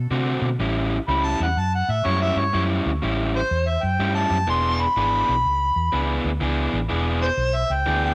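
A round, punchy, foam-muted electric bass opens this rollicking, laid-back electric blues shuffle at 124 BPM in A mixolydian, joined at once by a crunchy, overdriven picked guitar riff, before an overdriven, jazz-style harmonica with light vibrato enters at 1.1 s to carry a distant, roomy solo over D7, A7 and E7 chords, all set in a moderate echo-chamber reverb with small-room ambience in this excerpt from a longer piece.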